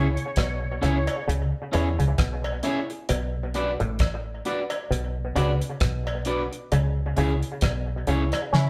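A moderately reverberant live-room recording of a laid-back, serious roots reggae passage, with a dark, round, foam-muted fingered bass and a dry, fat-snared 70s drum kit up front, the kit entering at 0.2 s. A twangy, slightly broken-up electric guitar and a stringy, muted clav through auto-wah and analog delay carry the accompaniment and riff over C#m and Bm, while a woody upright piano with audible action noise adds stabs in the background and a cowbell sounds through analog delay. A gritty, overdriven tonewheel organ with slow rotary speaker appears only in the opening 1.2 s, the band accents together from 6.7 s, and a breathy tenor saxophone enters at the very end alongside a closing drum fill.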